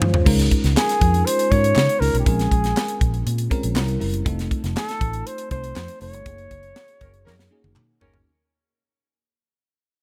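Glossy and urban, this short cut of polished 1980s jazz-funk pop at 120 BPM in Db major sets a breathy, scooped flugelhorn melody over a bell-like, sparkling FM electric piano with phaser and subtle chorus, a round, foam-muted electric bass, a tight, dry funk drum kit with bright cymbals and a high-tuned snare, faint hollow handclaps, and a very quiet horn section that slips in at 7.0 s, all in a small room while band accents, drum fills and a fade run through its 8.3 seconds.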